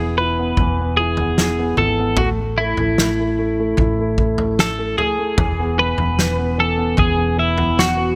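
A bright, twangy twelve-string electric guitar carries the melody up front, its clean, compressed tone sitting over a warm concert grand piano with deep bass and long sustain, and a round, dark hollow-body electric bass. This hopeful, tender pop ballad moves at 75 BPM in E major, and a natural country drum kit with a fat snare, punchy kick and toms joins at 0.6 seconds. The short excerpt, cut from a longer piece, sits in small room ambience as the chords move from E to A5 and back to E.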